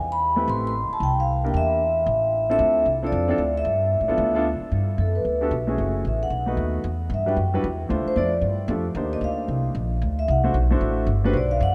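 Small-group swing and bop jazz with a playful, swinging mood, cut from a longer piece, where a ringing, metallic vibraphone played with medium mallets carries the melody and takes a solo from 4.7 seconds, over a woody pizzicato upright bass sitting up front and a natural-sounding concert grand piano that joins the accompaniment at 0.4 seconds, all set in a vast, echoing cathedral-like space.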